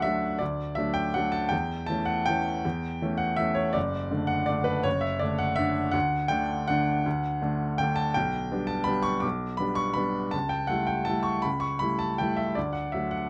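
Swaying in 3/4 at 162 BPM with a flexible, rubato feel, this sparkling and elegant classical piano waltz in D major is a short passage taken from a longer piece. A solo baby grand carries everything from 0.0 to 13.3 seconds, spanning F#1 to D6 with a clear, natural tone, long sustain and audible action noise. Close, detailed miking keeps the instrument up front and intimate in a nearly dry room as the harmony moves from D through A7/E, G/B and A7/C# before settling back on D.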